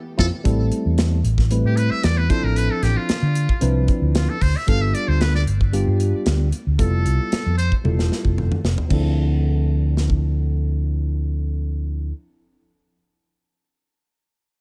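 A muted trumpet with a metal mute leads this nocturnal, slick electric jazz fusion excerpt at 114 BPM in D dorian, its buzzy, thin tone sitting distant with light vibrato and tape echo as it solos until 7.7 seconds. Underneath, a bright tine electric piano with analog chorus plays accompaniment over Am7, Dm9, G9 and Fmaj9#11, while a round, dark fretless bass sits up front. A polished acoustic drum kit with dark cymbals and a punchy kick plays a fill from 7.8 seconds, all in a small room.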